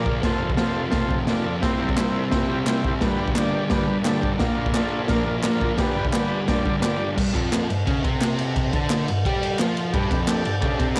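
A driving 173 BPM beat in straight 4/4 comes from a raw garage drum kit, saturated and gritty with a punchy kick, dark cymbals and a pumping small-room sound, joined from 2.0 seconds by crisp, close and dry group handclaps in this rowdy garage rock excerpt cut from a longer piece. Up front, a dark, double-tracked fuzz guitar riff runs over chords moving F, C, G, Bb and G, while a buzzy vintage combo organ with light vibrato holds sustained chords, dropping out at 7.1 seconds and returning at 9.9 seconds. The home cassette recording carries a moderate spring reverb and a rough, lo-fi edge.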